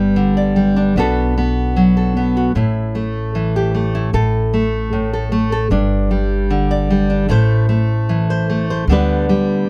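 Heartfelt and intimate, this acoustic folk-pop ballad moves at an unhurried 76 BPM in 4/4 with a straight feel, set in G major and cut from a longer piece. A fingerpicked nylon-string guitar sits up front, its fresh strings giving a classical, warm tone as it carries the accompaniment across the full 9.7 seconds. Beneath it, an upright bass played pizzicato adds a woody, dark foundation on steel strings, holding to its low register throughout. The harmony drifts from G through Bm7 and A5, pauses on a chord-free moment at 4.1 seconds, then continues through G5 and Am before settling on G/D. Close, detailed microphones and a light reverb keep the sound personal and clear.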